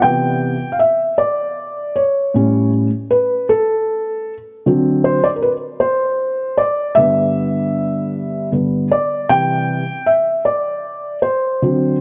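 A felt-muted upright piano plays alone, its soft, dark, thick-felt tone sitting up front and intimate in light reverb, carrying a tender, heartfelt pop passage in a straight 6/8 that moves from Cmaj7 through A7, D7 and G to settle on Cadd9 over this brief excerpt.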